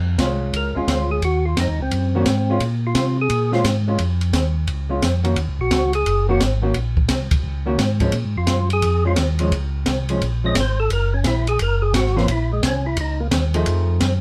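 A swung 4/4 groove drives this soul jazz organ trio, cut from a longer piece with a late-night, soulful mood. An open acoustic drum kit with dark cymbals, a high-tuned snare and a boomy kick sets the pulse on hi-hat, ride, kick and snare, heard as if in a small room. Underneath, a mellow tonewheel organ carries the bass line from the very start, round and clean through chorus vibrato and a slow rotary speaker. A hollow-body electric guitar, dark and fingered, fills in the accompaniment, while from 0.6 seconds a percussive tonewheel organ takes the melodic solo with a fat, lightly overdriven tone, third-harmonic percussion and its own slow rotary swirl, finishing at 13.3 seconds. The minor-key changes move between Ebm7 and Bbm7 before turning to Gb7 and closing on F7#9, all set in light reverb with the instruments sitting up front.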